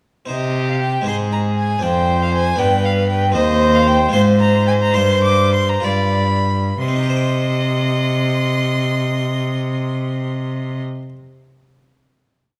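Introspective and solemn, this short baroque-style sonata movement in C minor moves in a slow 6/8, with two violins, cello and harpsichord all entering together at 0.3 seconds and slowing down from 2.6 seconds toward a long final chord at 6.8 seconds. A focused, smooth-topped violin with vibrato carries the melody high above a more distant second violin whose expressive portamento shapes a counter-melody and sustained chords, while an up-front cello walks and sustains the bass with rich, sliding vibrato. A bright, plucked French-style harpsichord rolls its chords beneath them and rings on briefly after the strings stop, all in a moderate recital-hall reverb.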